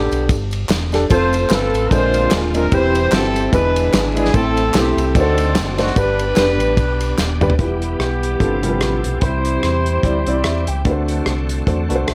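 Uptempo gospel with an uplifting, soulful swing, cut from a longer piece, where a mellow, tight horn section carries the melody over an intimate concert grand piano with audible action noise and long sustain, a round, punchy fingered electric bass, and an up-front soul drum kit with dark cymbals and a tight kick. A bright, shouting tonewheel organ holds sustained chords in the background through a slow rotary speaker and chorus vibrato from 1.1 seconds. Tambourine and handclaps add a live-room sparkle until a drum fill at 7.2 seconds leads into the second section, and a piano fill enters near 10.2 seconds, shortly before the horn line ends.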